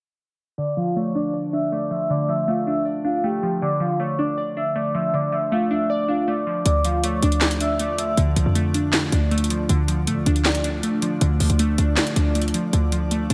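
Soft-mallet vibraphone with a mellow, ringing motor vibrato carries the melody over warbling, vintage-toned digital keys under a filter sweep from 0.6 s, setting a melancholic, eerie D minor mood at 158 BPM in a half-time feel, before this excerpt of a trap hip hop track brings in sharp snare, metallic hats, handclaps and a punchy, tight 808-style bass up front at 6.7 s, with an ethereal, glassy FM pad drifting in behind at 7.7 s amid light digital ambience.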